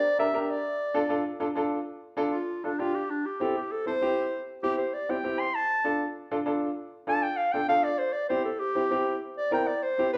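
A large, wet studio reverb surrounds this fiery, danceable Latin excerpt, played live in one room at 196 BPM in D minor. A present, classical-style clarinet carries the melody up front and takes a solo from 1.9 s, ranging from D4 to C6, while a woody upright piano with short sustain enters at 0.2 s to accompany over chords moving among Gm, Dm and C.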